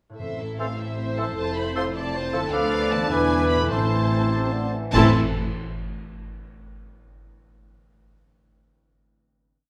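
Restless and urgent, this short, complete romantic orchestral movement in 6/8 pushes forward with elastic rubato. Ringing, fingerpicked harp arpeggios open at 0.1 s, and a lush violin section soon carries the smooth, vibrato-rich melody. Beneath it, a very quiet second violin section rocks between two notes. A close viola section adds a counter-melody, while cello and clear double bass sections hold a sustained bass line, with timpani single strokes on the bass notes. Flute, oboe, bright clarinet and a distant, roomy bassoon punctuate the harmony with short accented chords in the rhythm of the tune, the bassoon answering at phrase ends, as a mellow French horn section swells slowly in the background. From 2.5 s, dark cymbal swells, crashes and bass drum strokes build the drama toward a full-band accent at 4.9 s and a final chord that lingers in a reverberant recital hall.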